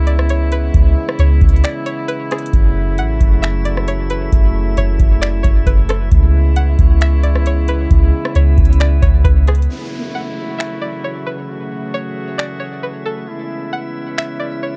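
A half-time 4/4 groove at 134 BPM drives this hazy, spacious cloud-rap excerpt in F# minor, built on a booming analog drum machine with a deep kick, metallic hats, finger snaps and rim clicks, sitting up front beside a soft, round 808-style bass that drops out at 9.7 seconds just as an electronic downlifter enters. Above, a brass ensemble holds smooth, lightly vibrato chords that pump against the sidechain, moving between C#m7 and F#m7, while a bright, twangy string-like resonator pluck carries the melody through chorus, low-pass filtering and digital delay. A calm, glassy harmonics texture drifts in the background with its own reverb, though the dark production overall stays fairly dry.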